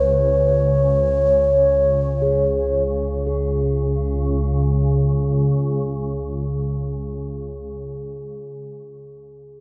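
A breathy, hollow alto ocarina with a crisp attack carries the melody up front around C#5, trailed by delay, until it falls away at 2.8 seconds in this free-time, meditative world piece. Beneath it, a soft, organ-like pad holds a full-bodied, detuned drone on C#2 with ensemble chorus and its own reverb for the whole fragment. A metallic bronze singing bowl rings in at 2.2 seconds around G#4 with slow beating, all set in a spacious cathedral reverb and the warbling pitch drift of worn cassette tape.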